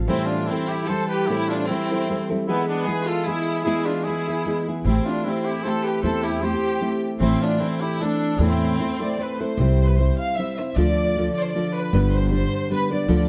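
A fingerpicked nylon-string guitar and a brief touch of upright bass open this festive, romantic mariachi passage in 3/4 at 152 BPM, cut from a longer piece. A rich bowed violin section with vibrato carries the melody in A minor, while a clear trumpet with a soft attack plays a classical-style second line, colored by slapback echo. The deep guitar accompaniment stays up front throughout, and the woody pizzicato bass returns at 4.8 seconds to anchor the harmony under Am7 and Am. The trumpet falls silent at 9.2 seconds, and at 9.6 seconds the music turns to C major, moving through C, Dm and G with strings, guitar and bass. Close, detailed microphones and light reverb give the recording an intimate studio sound.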